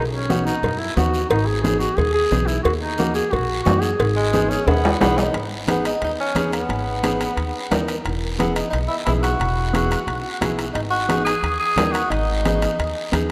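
A driving cumbia groove at 178 BPM in 4/4 rides on ringing, close and dry cowbell and timbales, medium-tuned congas set in the background and a raspy guiro, beneath a woody pizzicato upright bass up front and a dark, clean, compressed electric guitar playing fingered accompaniment in G# minor. A clear, vintage duduk with vibrato opens with a folk-style melody that ends at 5.0 s, while the tenor saxophone slips in at 4.2 s and, after a drum fill, takes a passionate solo from 5.3 s, bright and gritty with vibrato. A lush hall reverb surrounds this rough home demo mix, which is cut from a longer piece.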